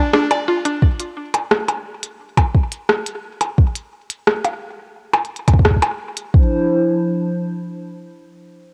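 A woody, round, mallet-like synth pluck opens this cerebral, intricate IDM excerpt in D minor at 87 BPM, playing a brief chorused arpeggio with cassette grit and tape echo that ends at 0.7 seconds. A glitchy, overdriven drum kit of clicky hi-hats, percussion blips and rim clicks, also carrying tape echo, enters almost at once and runs to 6.3 seconds, while a soft, overdriven electronic kick sits up front from 0.8 seconds. Light reverb and digital ambience frame the lo-fi, home-recorded cassette sound.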